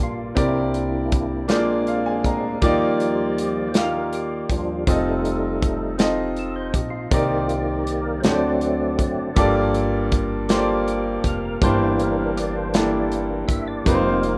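Reverent and hopeful, this slow gospel passage in 6/8 moves at 53 BPM. A fat, lightly overdriven tonewheel organ carries the solo with key click, third-harmonic percussion and a fast-spinning rotary speaker, while a clear, boxy grand piano sits up front in accompaniment and adds a fill from 1.5 to 2.6 seconds. Woody, thumpy pizzicato upright bass and a tight, small-room drum kit with hi-hat, kick and snare, entering at 0.4 seconds, support chords such as C9, Ebmaj9 and Gm9 in a rough home-demo mix with light reverb.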